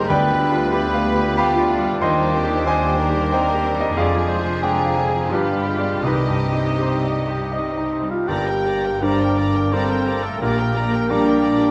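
Classical romantic movement for piano and orchestra, brooding and passionate in a rubato triple metre, with a bright, brilliant concert grand up front carrying the melody over deep bass alongside a lush, vibrato-rich violin section. A second line weaves through a pure, very quiet flute section, a rich second violin section, a vintage-toned solo clarinet and a warm solo oboe, while a dark bassoon and a focused viola section accompany, a mellow French horn section holds sustained chords, and a distant cello section joins an expressive, soft-attacked double bass section with portamento on the bass. Round, soft-mallet timpani are barely audible from 6.0 to 7.1 seconds, the harmony shifts to a new section at 8.3 seconds, and a moderate scoring-stage reverb frames this fragment of a longer work.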